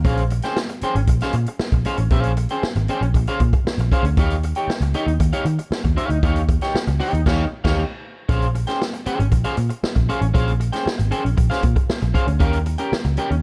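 A foam-muted, round electric bass sits up front in this cool, funky excerpt, its dark, amped tone anchoring a straight-feel funk groove in 4/4. Beside it, an electric guitar on the edge of break-up plays accompaniment with a picked, slightly gritty edge, colored by an analog chorus. An acoustic drum kit with a swinging big-band character fills out the band, pairing a punchy kick and medium-tuned snare with hi-hat and crash cymbal. The harmony moves between Bbm9 and Eb9, and the whole band hits an accent from 7.3 to 8.3 seconds before the phrase begins again. Small room ambience and a dark production give the recording a close, intimate sound.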